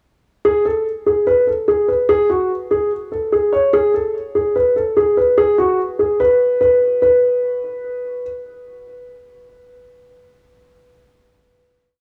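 Hip hop with a menacing, tense half-time feel, built on a single dark concert grand piano playing a looping melody repeated like a sampled loop, its mellow, boxy tone sitting up front with tape echo and deep bass, heard alone from 0.4 to 8.2 seconds in a dry, gritty recording with transformer saturation and light studio reverb, as a final note from 7.0 seconds carries the piece out.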